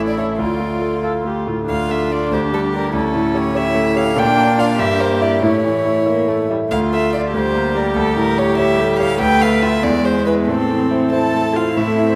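A bright, brilliant concert grand piano sits up front with deep bass, accompanying a pure, floating solo violin melody bowed sul tasto with an airy, soft attack in this dramatic, stormy classical-period movement for piano quartet in 6/8 with flexible rubato. A warm, intimate cello carries the second line with light vibrato, while a rich viola fills out the accompaniment further back. Moderate concert hall reverb surrounds the parts as the harmony moves from D minor toward an A minor chord at 10.5 seconds, in this passage cut from a longer piece.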